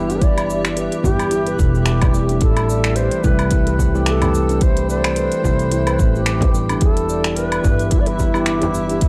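Warm and mystical, this organic downtempo piece in E minor moves at 109 BPM with a swung 16th feel: an airy, vibrato-laden low wooden flute with tape echo carries the melody over clean tine electric piano chords that pump and repeat through analog delay, a blurred, detuned granular pad pulsing in the background, woody pizzicato upright bass with tube saturation, ringing handpan arpeggios, a deep electronic kick, an organic electronic kit of cabasa, finger snaps, smooth hi-hat and woodblock, and a very quiet frame drum entering at 1.0 s, captured with a dry, gritty cassette character in a small room.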